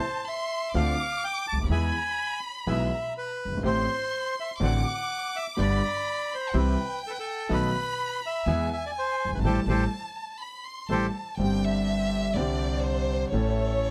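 Dramatic and melancholic, this tango excerpt in A minor moves at 124 BPM with a rubato feel, a reedy, bright bandoneon carrying the melody up front while a rich chamber violin section bowed with expressive vibrato adds a second line above it. Underneath, a smooth, vintage grand piano and a woody, growly pizzicato upright bass hold down the accompaniment and low end, with a second, warmer bandoneon playing stabs in the background, all set in light reverb and captured closely. A band accent runs from 9.4 to 11.4 seconds, the melody bandoneon dropping out at 11.1 seconds, and the violin section then takes a solo from 11.4 seconds to the close.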